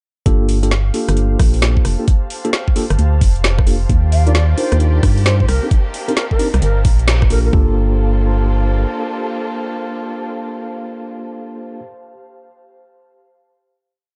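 Bouncy and skippy, this short two-step UK garage piece in G minor runs at 132 BPM with a swung 16th feel, opening straight into a drop where an overdriven, knocking electronic kick and a layered garage kit of woody snare, metallic hats and rim clicks skip beneath a hollow, organ-like FM bass line that pumps against the beat. Mellow electric piano stabs with delay and an airy, breathy pad with chorus carry the chords from Gm9 through Ebmaj7 and Cm9, while a lush violin section joins at 3.9 seconds and a pure, woody baroque flute adds short delayed phrases in the background. After a band accent at 7.1 seconds the rhythm section drops out, and the piano, pad and strings hold a final Gm9 chord to the end in a dark, dry production.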